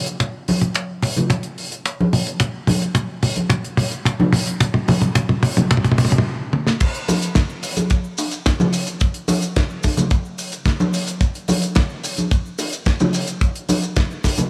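A damped 70s acoustic drum kit with a fat snare, crash cymbal, hi-hat, shaker and toms opens this groovy, cosmic nu-disco groove in a straight 4/4, joined by a dry, tight kick and ringing congas, cabasa and bongos played with soft hands, every part up front in a lush hall reverb, as a drum-filled build-up halts in a brief stop at 6.3 seconds before the drop lands at 6.8 seconds.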